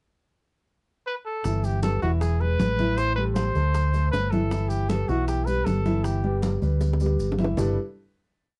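A mellow, lightly vibratoed trumpet with scooped notes carries a sunny, danceable Afro-Cuban jazz hook in G major at 156 BPM from 1.1 seconds, over a round, punchy electric bass tumbao that anticipates the chords, a dark concert grand playing montuno in octaves, and background bongos, congas with slaps and open strokes, and grainy maracas, before a drum fill at 6.8 seconds leads to a final chord.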